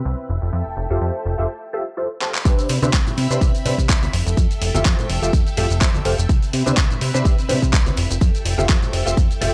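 Filtered disco house with a sunny, joyful mood, this cut opens on a filter sweep as a lush, vintage string machine holds sustained chords through phaser and ensemble chorus, over a plucky, detuned analog bass that sits up front; both pump with the sidechain, and a nasal, mellow polysynth comp joins at 0.9 seconds. A dusty, gritty sampler-style kit of handclaps, hi-hat and shaker plays a fill at 2.2 seconds before the drop at 2.5 seconds, where a punchy, layered electronic kick lands up front and ringing tambourine and congas sit in the background. Swung sixteenths give the groove a funky lilt, and the mix stays dry.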